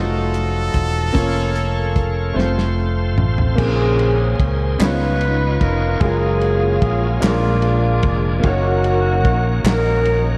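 Slow gospel in a straight 6/8, solemn and fervent, cut from a longer piece and bathed in a lush hall reverb that gives it a dreamy haze. A brilliant, forceful trumpet with vibrato and an echoing delay sings the opening line over clear grand piano, a shouting tonewheel organ with overdrive and fast rotary speaker, and a dry, muffled soul drum kit whose fill leads into the next section. From 3.6 seconds a mellow, tight horn section takes the melody above an up-front fingered electric bass, while crisp handclaps join in the background from 4.8 seconds.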